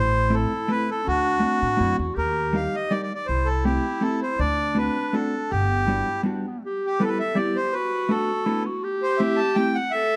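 A reedy single-reed accordion carries the melody up front in this whirling, bittersweet musette waltz, its dry tuning giving the line a plain, unwavering edge. Beneath it, a clarinet in classical style plays a second line with a close-miked, clear tone. A woody, growly upright bass, played pizzicato on steel strings, sits forward in the mix until it drops out at 6.0 seconds. A dark, clean hollow-body electric jazz guitar joins at 0.3 seconds, picked and compressed, to fill out the accompaniment. The lilting three-beat swing turns toward a second section at 6.6 seconds, and the whole fragment, taken from a longer piece, is heard through close, detailed microphones in a moderate recital-hall reverb.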